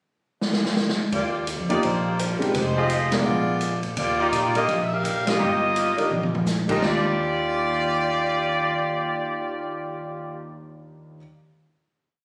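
A drum fill opens this short, joyful big band swing piece in Eb major at 168 BPM, and at 1.1 seconds the saxophone section takes a light-vibrato melody in four-part block voicing over a woody pizzicato upright bass in a two-feel, joined at 1.7 seconds by intimate piano comping in rootless voicings and a tight trumpet section adding syncopated stabs in close voicings. Boomy kick, dark cymbals and a ride pattern drive the distant, roomy kit, while a band accent lands at 3.1 seconds and another fill at 6.1 seconds leads into a final chord that rings on piano, bass and trumpets in a moderate hall reverb caught as if by a phone in the room.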